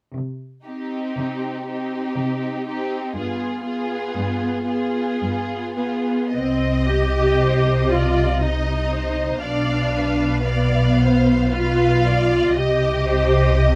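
A close, softly attacked cello section opens at 0.2 s in this yearning, melancholic slow romantic movement for string orchestra in C minor, joined at 0.7 s by a focused, vibrato-rich violin melody, a second violin line with expressive portamento, and a clear, up-front viola accompaniment, the music unfolding in a rubato 3/4 at 58 BPM under moderate studio reverb until a lush, up-front double bass section enters at 6.3 s to anchor the low end of this excerpt.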